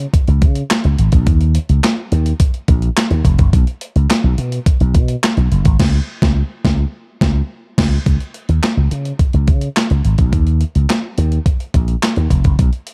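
This early-eighties boogie funk excerpt moves at a smooth, danceable 106 BPM in a straight 4/4, tuned to A4 = 442 Hz. A punchy, growly slap bass runs through an envelope filter, sitting up front with a bright, amped electric edge across a range from E#1 to C#3. Beside it, a crisp 8-bit digital drum machine with a sampler-style character drives the groove with a thumpy kick, a medium-tuned snare, hi-hat, handclaps and crash cymbal, its overdriven sound re-recorded in a small room and placed close to the listener. Both parts hit a shared accent from 5.8 to 8.1 seconds, after which a new section begins. The production is dark, warm and dry, keeping the bass and drums tight and immediate.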